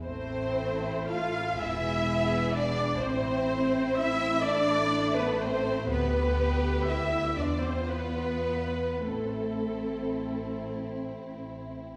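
Heard from further back in a wet recital hall, this short cut from a longer classical piece is a slow, elegiac romantic movement for string orchestra in A minor, moving in a rubato 6/8 at roughly 33-42 BPM. A violin section carries the yearning melody with expressive vibrato, yet it sits in the background of the blend, while a second violin section plays a focused, close second line beneath it. The viola section adds smooth, even accompaniment from a distance, and the cellos share the bass with the double basses, the cellos rich and remote while the basses sound clear, intense and up front with light vibrato. The harmony moves from Am through E and G6/D to E5 before settling back on Am at 9.0 seconds. The melody violins, violas and cellos stop at 10.8 seconds, leaving the second violins and double basses to sustain until 12.0 seconds.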